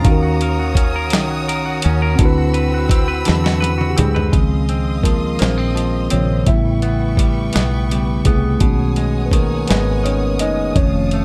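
A dry, intimate sound frames this slow six-eight R&B excerpt at 56 BPM, led by a gritty, compressed sampler-style drum kit placed up front, with a thumpy kick, a fat snare, a small-room character and a drum fill from 3.3 to 4.3 seconds. A dark, round and punchy fretless bass enters at 0.1 seconds beneath a mellow tine electric piano, a clean semi-hollow electric guitar playing a fingered second line, and bowed studio strings holding clear, focused chords with vibrato. At 4.3 seconds the electric piano takes a solo over chords moving from Dbmaj9 through A9 to Cb69.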